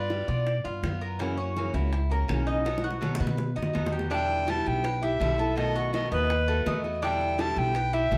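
Warm and nostalgic, this Cuban son and guajira piece in E minor moves at a lively 165 BPM in straight 4/4. A bright, reedy alto recorder with a tongued chiff and vibrato carries the close-miked melody up front, sounding only briefly at the start before returning at 4.1 s. Beneath it, an old ladder-braced acoustic guitar adds boxy picked accompaniment, a Cuban tres spins metallic double-string arpeggios, a woody, thumpy upright bass anchors the low end, and round, low-tuned bongos join at 0.1 s, with a drum fill at 2.7 s, all set in moderate studio reverb.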